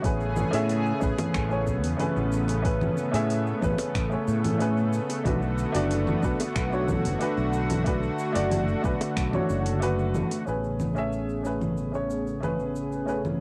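A straight 4/4 groove at 92 BPM drives this blissful sunset chillout piece in A major. A deep, overdriven electronic kick and a metallic-hatted deep house kit of congas, finger snaps, hi-hat and shaker set the pulse, joined at 1.2 s by tight, high-tuned bongos sitting dry in the background. A growly, punchy fretless bass holds the low end beneath an intimate baby grand piano, up front with audible action noise, 12-bit sampler grit and tape echo, while a lush, detuned sawtooth-and-square unison pad with chorus sustains Amaj9 and Bm7 chords. The kick stops at 9.3 s, and from 10.5 s a filter sweep moves across the pad as the harmony returns to Amaj9, the whole mix set in light reverb with the character of a home cassette recording.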